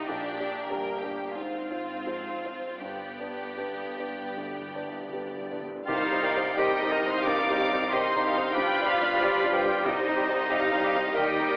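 Classical romantic writing for piano and orchestra, this passionate, brooding passage moves with rubato as the up-front grand piano carries the melody with a polished, long-sustaining tone, joined by distant, lush violins above, a second violin line, and a smooth viola section in the background. A dark, woody cello section and a background double bass section hold the bass, while close, dry timpani struck with hard mallets add a fill between 2.8 and 5.9 seconds. At 5.9 seconds the woodwinds arrive with a clear, roomy oboe, a bright clarinet, an airy flute ensemble, a very quiet bassoon and tight French horn chords, all heard through a wet stage reverb and a telephone-like sound.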